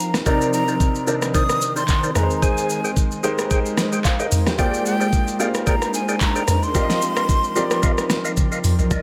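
Up-front electronic R&B drums with a knocking kick, fat snare and warm hats anchor this soulful, late-night amapiano excerpt, lightly swung and closing with a fill at 8.4 seconds. Above them, a breathy, hollow jazz flute carries the melody through tape echo, while a polished baby grand piano, a mellow, flute-like tonewheel organ with fast rotary and key click, and an ethereal pad with chorus and sidechain pumping fill out the Cm9, Abmaj7, Bb13 and F7sus4 changes. A tight, punchy log drum bass enters only at 8.9 seconds, sitting in the background under light reverb.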